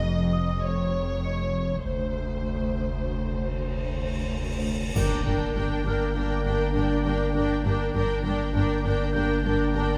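A moderate recital-hall reverb gives this brief cinematic suspense cue an uneasy, tense air, moving at 100 BPM in 5/4 with a straight feel. Lush, vibrato-laden violins carry the melody over rich, bowed cellos and double basses, while a deep, punchy sub bass with a pitch-drop attack holds a drone up front and a delicate, bell-like celesta glints airily in the background. The harmony shifts from Dbadd9/F to Dm7/F before a huge, dark cymbal swell begins at 3.7 seconds and breaks into an impact at 5.0 seconds, where the music settles into G minor. From that point a second violin line with a soft, expressive attack, a clear but distant viola section and dark French horns holding sustained chords thicken the texture, and a very quiet, close triangle sounds briefly until 6.1 seconds. The violins, violas, horns, celesta and sub bass sustain through to the end of this fragment of a longer piece.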